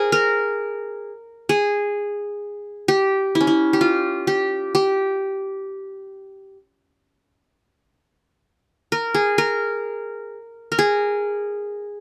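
A solo acoustic qanun opens this hypnotic, longing Arabic passage at 129 BPM in 10/8, its bright, plectrum-plucked triple strings sitting up front between Db4+25c and C5, tuned to A4 = 436 Hz and captured by close, detailed microphones in a nearly dry room, with the 12-second fragment cut from a longer piece.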